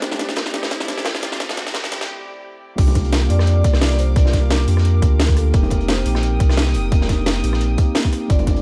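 Lush and dreamy, this liquid drum and bass fragment runs at 174 BPM in C dorian, opening with a build-up where a background riser and a drum fill carry it to a brief break at 2.1 seconds. At the drop at 2.8 seconds, a deep, round sine sub bass enters up front beneath a tight, overdriven electronic kick and a layered kit with a cracking snare and bright hats. Around them sit a gritty breakbeat kit with a rolled-off top, low-tuned bongos, a mellow tine electric piano with dub echo, a metallic, ringing vibraphone melody with delay, and a floating, bowed string section pumping softly in the distance over sus4 chords.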